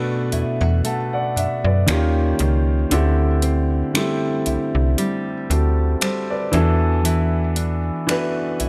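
A dark, mellow concert grand piano and a woody, fingerpicked nylon-string guitar open this slow contemporary R&B excerpt together, the guitar's classical arpeggios carrying a touch of delay and the worn sound of old strings. At 0.3 seconds a snappy, digital FM bass with a fast, metallic attack joins up front, alongside a produced trap kit of finger snaps and metallic hi-hats set low in the mix. The piano sits forward with deep bass, a boxy tone and long sustain, while the sixteenths carry a slight swing. The harmony drifts from Bm7 through D#9 and D9sus4 to E9sus4, giving the passage a longing, sensual mood. Light reverb and a digital ambience surround the whole break, which runs to 8.7 seconds as part of a longer piece.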